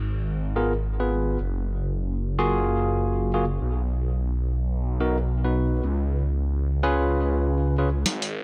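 A dry, up-front mix opens this playful, swaggering glitch hop excerpt at 108 BPM with a swung sixteenth feel, where a thick, swirling detuned saw bass, saturated and phased, holds the low end from the start. Bright, barky electric piano stabs through a combo amp enter at 0.6 seconds, filtered in a sweep and trailed by tape echo over a G#m6, F#maj9, B and C#7 progression. At 8.1 seconds a gritty, pitched-down sampler-style drum kit comes in with a short hi-hat and snare fill.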